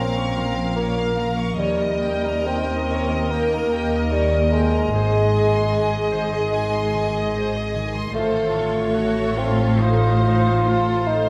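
A moderate recital-hall reverb frames this serene, tender slow romantic orchestral excerpt at 74 BPM in a rubato 4/4, where a smooth, even violin section carries the melody over a lush, distant second violin line, lightly vibrato violas, an up-front mellow solo bassoon, ringing thumb-plucked harp arpeggios, and a bass of rich cellos in the background with intense double basses, moving through Bbm, Eb7, Ab and F7/A.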